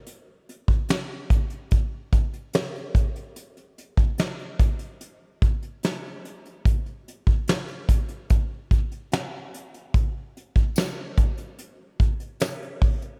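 Indie pop with a laid-back, nostalgic mood, built on an up-front soft brush drum kit of fat snare, punchy kick and hi-hat in a small acoustic room, joined at 10.8 seconds by a jingly, close and dry tambourine tucked in the background.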